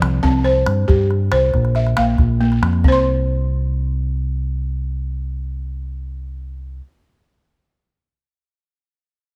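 A buzzing, woody balafon plays arpeggios over a round, punchy fingered electric bass and a deep, close calabash in this short, hypnotic cut of West African string and xylophone music in a straight 12/8. The soft-mallet balafon sits up front with a dry, boxy small-room tone, while the dark, directly amped bass anchors the low end and the acoustic calabash drops out at 3.0 seconds. The harmony moves from C5 to Bb5 before the passage shifts into a second section at 2.8 seconds, with balafon and bass continuing in light reverb until about 6.9 seconds.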